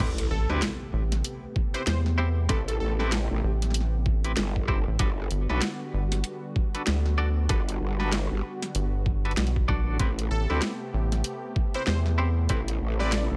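A swung 96 BPM glitch hop groove in A dorian drives this playful, gritty drop cut from a longer piece, as a thumpy overdriven kick and an electronic kit with a cracking snare, bright hats and crash pound under a growling, wobbling bass and a rubbery, nasal square bass, while twangy clean guitar stabs with tremolo and tape echo pump against a warbling vintage pad over Am9 and Gmaj7, a faint impact opens the first 2.5 seconds, and a punchy, catchy unison lead with tape echo appears at 0.3 and returns at 10.3 seconds, all in a digital ambience.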